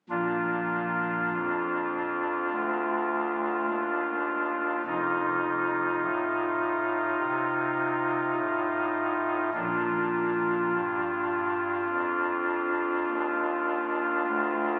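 Reverent and majestic, this brief excerpt from a longer classical piece unfolds as a slow, chorale-style passage for solo pipe organ, played with a flexible, rubato feel in four. A soft reed voice carries everything, an oboe stop with a baroque voicing and a tremulant that sits up front in the sound. The part ranges from F1 up to F4, reaching from deep bass notes up into the tenor register. The harmony moves from Bb to F7 at 4.9 seconds and settles back on Bb at 9.5 seconds before the passage breaks off at 14.8 seconds. A long, wet church reverb surrounds the organ, and the phone-in-the-room capture adds a further blurred, club-like ambience that softens the edges of each chord.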